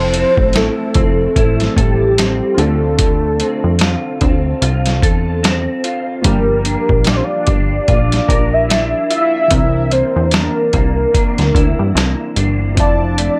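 Indie pop with a bedroom-pop haze, this mellow, wistful 74 BPM fragment in G dorian swings gently over Fmaj7, Dm7, Gm7 and C9 as a soft, dark octave-layered synth lead carries the melody through phaser, chorus and plate reverb, a slightly broken-up electric guitar through a small old amp picks its accompaniment with vibrato, round analog keys with cassette-tape color sit in the background, and a punchy, funky plucked analog bass drives up front beside a muffled, tape-warm lo-fi sampler kit with a thumpy kick, all in a light reverb.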